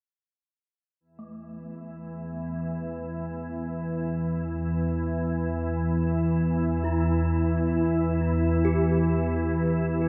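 Drenched in a cathedral reverb that fills a vast, echoing space, this cut from a longer dark ambient drone piece feels cavernous and unsettling, as a calm, detuned, organ-like drone in unison sits up front from 1.6 seconds with ensemble chorus and its own reverb, while a smooth, shimmering bronze metallophone played with a wooden mallet fades in from 1.0 seconds in the background, its ringing arpeggios carried on delay.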